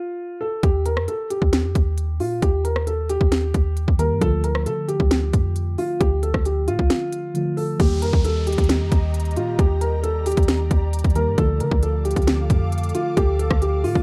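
A boxy, dark grand piano opens this menacing, half-time trap excerpt at 134 BPM before a boomy sine 808 and up-front trap drums with hard-clipped kick, sharp snare and crisp hats arrive at 0.6 seconds over shifting Eb and Dm chords, joined by muted, warbling felt-like synth keys with chorus at 4.0 seconds, then an electronic downlifter at 7.8 seconds and an ethereal, detuned pad soaked in its own reverb at 8.4 seconds.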